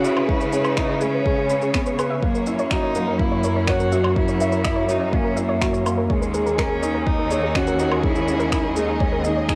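A straight 4/4 pulse at 124 BPM, set by overdriven, tape-saturated electronic shaker, woodblock and finger snaps with a deep, distorted electronic kick joining at 0.3 s, drives this tender, hopeful piano and strings electronica fragment, where a mellow upright piano plays a riff with audible action noise and analog delay, a lone woody cello sings a vibrato melody through cassette tape, a lush, distant symphonic string section holds dark sustained chords, a soft round pluck with chorus, sidechain pumping and delay ripples arpeggios in the background, and a bright, intense studio cello section carries the bass with sidechain pumping, all moving through C#m7, F#7 and D#7sus4 in a moderate studio reverb with the intimate grain of a home cassette recording.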